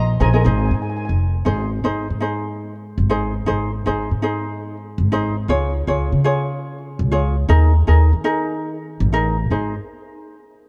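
Heard from further back in a room with light reverb, this festive, bouncy calypso excerpt in Ab major moves at 119 BPM with a gentle swing. A mellow, shimmering double seconds steel pan, played with soft rubber sticks and carrying a boxy small-room colour, sounds the melody only until 1.1 seconds. A woody, thumpy pizzicato upright bass with steel strings and a light, fingerpicked ukulele sit up front, carrying the harmony from Ab through Db and Ebsus4 back to Ab.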